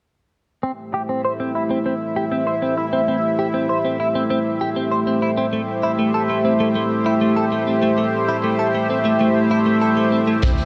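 Synthwave at 98 BPM with a nostalgic, uplifting mood, this excerpt rests on an Am7 chord, where a shimmering, detuned pulse-width pad holds sustained chords up front with sidechain pumping, while a bright, clean, direct-recorded electric guitar plays a picked riff through analog chorus, digital delay and a low-pass filter sweep. Only at 10.4 s do the drums arrive, a punchy, saturated kick and a gritty, rolled-off hi-hat in a bright stone room. The production is dark and warm, bathed in a lush hall reverb.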